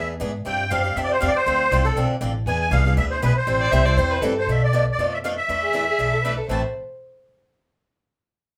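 A brisk, swung four-beat pulse drives this short cut from a longer piece of acoustic string swing in the jazz manouche style, with a bittersweet yet virtuosic mood. An upright bass gives the bottom end a woody, thumpy pizzicato on gut strings, sitting up front beside a bright, boxy picked swing guitar that supplies the accompaniment. Leading the tune is a musette accordion, reedy and shimmering with its wet musette tuning, placed up front in the mix. At 3.6 s a single bowed violin joins with a second line, soft in attack and expressive, colored by vibrato and portamento. The harmony moves through G7sus4, Dm7, E7 and Am7 before turning darker with Bm7b5 and E7sus4 and settling on A5, all heard in a lively, reverberant studio room where the band plays together live.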